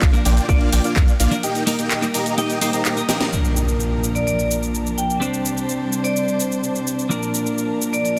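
Festival progressive house at 127 BPM in Bb major, this triumphant, anthemic passage is cut from a longer piece and opens straight into a drop, with a huge, detuned supersaw riff pumping against a saturated sub bass and a punchy, up-front electronic kick. The kick and sub bass fall away by 1.4 s as a break begins, leaving the supersaw riff, a house kit with a cracking snare, handclaps, hi-hat and shaker, and a bright, twangy twelve-string electric guitar that carries delayed, pumping accompaniment throughout. The supersaw runs through a low-pass filter and digital delay, and a drum fill at 3.1 s leads into the second section. At 3.3 s an electronic impact lands as the supersaw drops out and a bowed string section enters with soft-attack, sul tasto sustained chords over a move from Bb to Csus2 and back. From 4.2 s a vintage vibraphone struck with hard mallets adds a ringing, metallic melody, trailed by digital delay. 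The mix sits in light reverb under a dense, heavily limited modern master.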